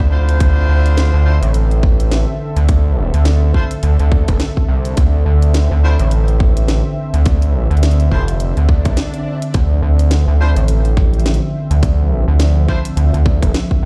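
Playful and swaggering, this glitch hop excerpt struts at 105 BPM in D minor with a swung sixteenth feel, resting on a single Dm9 chord while a gritty, nasal sawtooth synth bass with oscillator sync and a filter sweep sits up front beside a tight, overdriven electronic kick. A drum and bass kit adds a cracking snare and bright hi-hats, while a soft, detuned analog pad with chorus, tremolo and sidechain pumping holds sustained chords and a distant, roomy horn section with light vibrato fires pumping stabs trailed by delay. An electronic swell enters at 8.7 seconds, overlapping a short break at 9.0 seconds, all heard as if played on a big sound system in a bare stone room.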